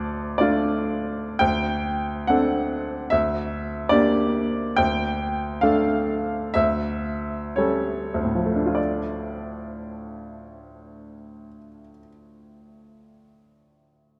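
Romantic classical character piece for solo piano, passionate and stormy, played with free rubato in 2/4 and cut from a longer work. The baby grand sounds clear and natural with a short sustain, placed up front and spanning D2 to D6, while a wet concert hall reverb surrounds it. The harmony moves from D minor through D7, Gm/D and A7/D, and the playing slows from 3.9 to 8.8 seconds before settling back on D minor, with the piano sounding until 14.2 seconds.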